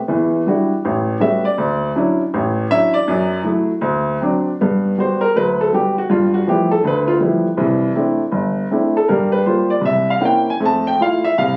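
Solo jazz piano, playful and warm in mood, moving at 161 BPM in 4/4 with a swung eighth-note feel and a loose, rubato pull against the beat. A baby grand carries the whole performance from 0.1 to 11.6 seconds, its warm, natural, up-front tone spanning from G1 to A5. The harmony begins with rich extended chords such as Em9, A13 and Dmaj9 before settling into G major at 4.6 seconds on a Gmaj7. From there the progression passes through G13 and C69, then slips to Gm7 and a tense C7b9 before landing on Fmaj7. The sound was captured on a phone in a room with light club reverb, and this brief cut is taken from a longer piece.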